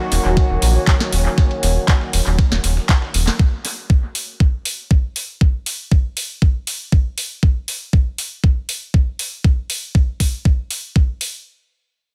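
Acid house at 119 BPM in Eb minor, driving and gritty, where a reedy, bowed string section holds a sustained Ebm chord under a filter sweep and sidechain pumping, beside a warbling, detuned lo-fi pad with chorus and a round, deep sawtooth bass, all three gone by 3.4 s, while a very quiet, dusty soul sampler-style kit adds ride cymbal until 3.3 s and an overdriven, thumpy electronic kick and a booming analog drum machine with crisp snare, handclaps and metallic hats push on through an echo-heavy mix, the drum machine running to 11.3 s.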